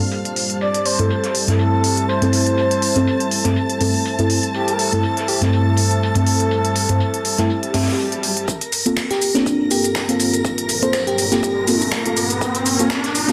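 A swung deep house groove at 122 BPM in 4/4 opens this deep, warm excerpt in G dorian, built on finger snaps, smooth hi-hat and shaker from an up-front electronic kit, with a distant, roomy soul kit adding hi-hat and a medium-tuned snare far in the background. A dark, detuned analog pad sustains chords beneath it, pumping against the beat, while a lush bowed violin section with vibrato adds texture high above, and a soft, decaying chord stab with chorus, phaser and tape echo comes up front from 1.0 s, moving between Gm11 and Am/G. A breathy, flute-like synth lead carries the melody from 0.6 s to 7.9 s, wrapped in lush chorus and dub echo. At 8.5 s a build-up begins: a swell gives way to a riser, filter sweeps pass over the stab and the pad, a deep electronic kick enters, and a sparkling, bell-like FM electric piano plays a short melody. The mix is dense and heavily limited, set in a wet plate reverb and a small room.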